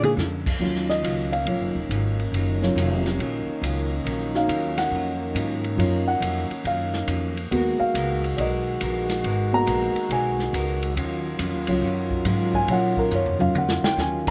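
A dark, mellow baby grand piano takes the lead in this brassy, swinging big band jazz excerpt, soloing from 0.6 s with an intimate tone, audible action noise and short sustain. A clear trombone section holds sustained chords with light vibrato and a close-miked presence, moving through minor ninth harmonies that shift from Ebm9 to Abm9 and back. Underneath, a pizzicato upright bass gives a woody foundation while a clean, picked hollow-body electric guitar comps quietly in the background, touched with slapback echo. The acoustic drum kit is airy and polished, with a medium-tuned snare, a punchy kick, and ride, hi-hat, crash and toms, opening with a fill at 0.0 s and adding another at 13.1 s. The overall sound is dry and open, with little reverb, as if played outdoors.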